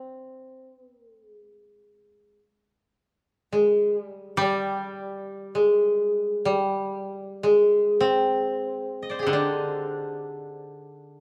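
This is Japanese traditional chamber music, an austere and meditative piece in free time, set in the C hirajoshi scale. A koto carries the melody from the first moment, its fingerpicked notes sounding woody and dry and sitting up front, ranging from G3 to Eb5. At 4.4 seconds a second koto joins in a supporting role, keeping to a narrow low register between D3 and G3 and sitting quieter beneath the lead. Both instruments share the same fingerpicked, woody character, and close, detailed microphones capture their plucked attacks with intimate clarity. A light reverb lends only a faint sense of space, and the passage, cut from a longer piece, runs to 11.2 seconds.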